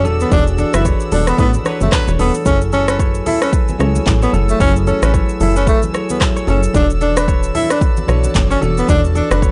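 A mellow, smooth afrobeats groove at 112 BPM with a swung 16th-note feel carries a warm, close-miked tenor saxophone melody over bell-like tine electric piano, a punchy plucky analog bass, an up-front deep house kit of kick, hi-hat, handclaps, rim click and shaker, low-tuned congas, a ringing fingerpicked kora riff with analog delay, and floating background strings that pump under sidechain, as a tight horn section adds a brief second line at 1.7 seconds, all over E9sus4 and F#m9 chords in a dry, gritty small room.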